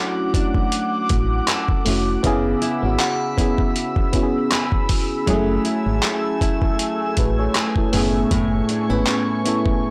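A mellow, chorused FM electric piano, a glassy pad washed in ensemble chorus and reverb, and a fingerpicked nylon-string guitar with slapback echo open this sensual, longing contemporary R&B excerpt, drifting through lush major-seventh and minor-ninth chords over a gently swung groove. A gritty, overdriven sampler-style drum kit of thumpy kick, hi-hat and handclaps sits up front from 0.3 seconds, joined at 1.1 seconds by a punchy, round FM bass. A crystalline synth bell glints in the background around 3.0 seconds, and the whole recording has a blown-out, overdriven sheen in a light reverb.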